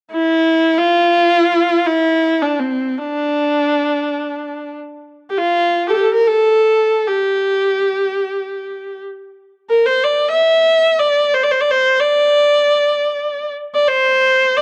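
A solo viola, rich and smooth with vibrato, plays up front in free time from 0.1 s in this hypnotic, soulful Turkish passage in makam Ussak on D, its even bowed line carrying cassette-tape character within the light, small-room reverb of a home cassette recording cut from a longer piece.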